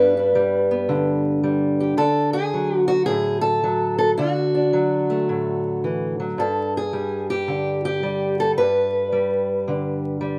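A boxy, up-front fingerpicked steel-string parlour guitar plays alone through this gritty, soulful acoustic country blues excerpt at 109 BPM with a swung 4/4 feel, moving from G to D at 2.0 seconds and back to G at 6.4 seconds, set in light reverb with the rough character of a home demo and a layer of vinyl crackle.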